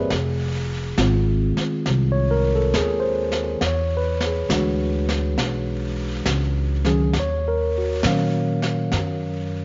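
Melancholic and intimate, this slow jazz ballad at 68 BPM in 4/4 sways with a swung feel, a short passage cut from a longer piece that drifts from Fm7 through E9 to Ebm9. A worn, slightly out-of-tune tine electric piano sits up front with clean accompaniment, while a woody pizzicato upright bass on steel strings carries the low end. Soft brushes on a high-tuned snare and hi-hat join at 0.1 seconds, all set in a small room with light reverb and a rolled-off top end.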